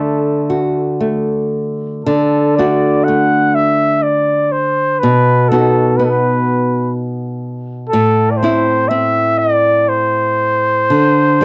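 Wistful and tender, this short cut from a longer Celtic slow air moves at an unhurried 61 BPM in a rubato three-time, breathing freely rather than marching to a strict pulse. A flugelhorn carries the melody throughout, its mellow, vintage tone shaded with light vibrato and a soft attack, played in a classical solo style that sits up front. Beneath it, a small-sounding nylon-string guitar is fingerpicked in accompaniment, equally close and present, with the faint grain of cassette tape on its sound. The harmony rests on D before moving to B at 5.0 seconds and A minor at 7.9 seconds, then dissolves into a chordless moment at 10.9 seconds. A moderate studio reverb and the intimate character of a home cassette recording lend the whole piece a cozy, personal glow.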